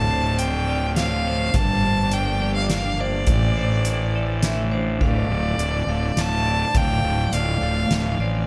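Post-rock in a melancholic, cathartic 3/4 at 104 BPM in D minor, this short excerpt moves through Dm7, Gm7 and A7sus4 before returning to Dm7 at 5.0 seconds. An up-front bowed violin sings the melody with rich vibrato and tape echo over a fuzzy, overdriven fingered bass, while a bright, twangy twelve-string electric guitar and a metallic, ringing hard-mallet vibraphone weave echoing arpeggios in the background. A very quiet symphonic string section holds smooth, sustained chords, and a soft-mallet drum kit with a fat snare and boomy kick enters at 0.4 seconds, all set in a moderate recital hall reverb.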